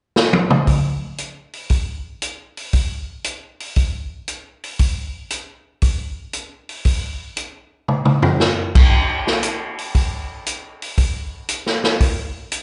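A swung 4/4 groove at 116 BPM, with the eighth notes leaning heavily into the shuffle, drives this short, energetic jazz fragment cut from a longer piece. The only instrument is a swinging big-band drum kit: crash cymbal, hi-hat, kick drum, snare drum and toms, with a punchy kick and a medium-tuned snare that sit up front with a natural acoustic character. A drum fill launches the passage at 0.2 seconds, and another at 7.9 seconds leads into a new section beginning at 8.9 seconds. The sound is that of a live gig heard through the venue's PA, with club reverb and a moderate plate reverb around the kit. The top end stops near 10.7 kHz, which gives the cymbals a muted, rounded edge.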